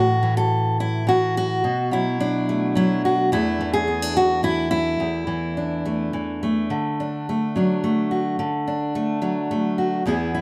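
Hopeful and nostalgic, this short cut from a longer folk piece features a solo fingerpicked steel-string dreadnought acoustic guitar, sitting up front with a bright, full-bodied tone from fresh strings. It moves in a rubato 3/4 around 107 BPM, tuned to A4 = 441 Hz, spanning E2 to A4 as the harmony passes through A5, Bm7 and E7sus4 before settling on D at 6.7 seconds. A moderate small-room ambience surrounds the guitar.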